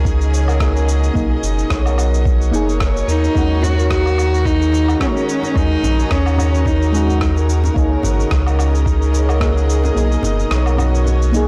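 Hypnotic, warm organic downtempo with a lightly swung groove, where a soft, detuned chord stab with chorus, delay and sidechain pumping sits over earthy bowed chamber strings, ringing thumb-plucked harp arpeggios trail through delay, a round, up-front sine sub bass anchors the low end, an overdriven electronic kick drops out at 10.0 seconds, and a gritty sampler-style shaker, woodblock and rim click keep time, while a dark, expressive solo cello with vibrato and portamento carries the melody from 3.1 seconds, a very quiet djembe joins soon after, and the blown-out, overdriven recording sits in light studio reverb.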